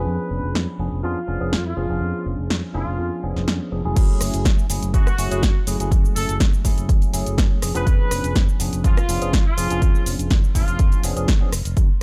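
Filtered disco house with a sensual, nostalgic mood, cut from a longer piece, it opens on a filter sweep: a tight, vintage horn section with light vibrato carries the jazz-style melody through tape echo, over a clean tine electric piano with phaser played through a combo amp and a bright, direct fingered electric bass with tube saturation, each part pumping behind a low-pass filter. An overdriven analog drum machine joins at 0.6 s with dry snare, rim click, hi-hat, cabasa and crash, and at 4.0 s the drop arrives as a punchy, up-front electronic kick enters with small-room ambience. The mix is dry and gritty, colored by hardware transformer saturation.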